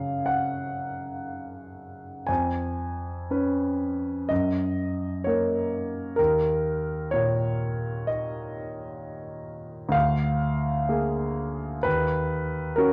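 A concert grand piano sits up front, intimate and natural, with deep bass and audible action noise, carrying a yearning, melancholic romantic nocturne in a slow, rubato 4/4. The solo piano spans the full 12.9 seconds of this fragment cut from a longer piece, its moderate stone-room reverb colouring the sound. The whole recording has a worn, warbling cassette-tape quality with a drifting pitch.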